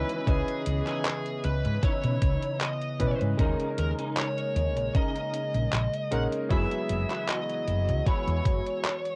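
Heard through light reverb and the soft haze of a home cassette recording, this short excerpt of melancholic vaporwave moves with a slight swing. A detuned 8-bit drum machine plays handclaps and hi-hat from 0.1 seconds, joined at 0.3 seconds by an electronic kick that sits up front with a thumpy, overdriven punch, both carrying cassette-tape grain and the sound of being re-recorded in a small room. A woody fretless electric bass, round and hollow-bodied, holds the low end between 0.3 and 8.6 seconds. A bright electric grand piano with clangy lows and 12-bit sampler grit comps over C#m9, D#7sus4 and F#9sus4, while a warbling, nostalgic pad of detuned, wave-folded tones swells slowly beneath it with chorus and built-in reverb. A twangy, scooped clean guitar with ensemble chorus plays a picked riff, and a high-gain distorted lead guitar carries the melody through cassette saturation and tape echo.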